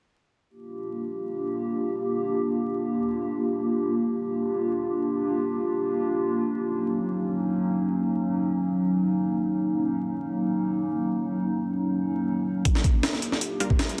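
Atmospheric and frenetic, this drum and bass and jungle fragment in free time is cut from a longer piece and drifts over Gm7 and Ebm7 chords in a lush hall reverb, with vinyl crackle across a dense, heavily limited master. A gritty, pitched-up breakbeat kit with a thumpy kick, high-tuned snare and hi-hat arrives up front at 12.7 seconds, tape-warm and compressed. At 13.6 seconds a bold, bright orchestra-hit-like synth stab built from detuned sawtooth unison and a noise layer cuts in with a fast attack and filter pluck, decaying into dub echo.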